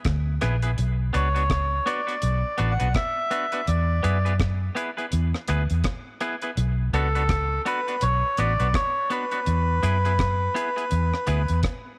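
Roots reggae at 83 BPM in B dorian, laid-back and serious, where a dry drum kit with a tight kick, hi-hat and rim click sits under a dark, round, punchy muted bass up front, a bright, twangy clean electric guitar with tape echo plays the accompaniment, and a reedy, nasal melodica, also with tape echo, carries the melody from 1.2 seconds over a lightly reverberant room and an E–Bm progression.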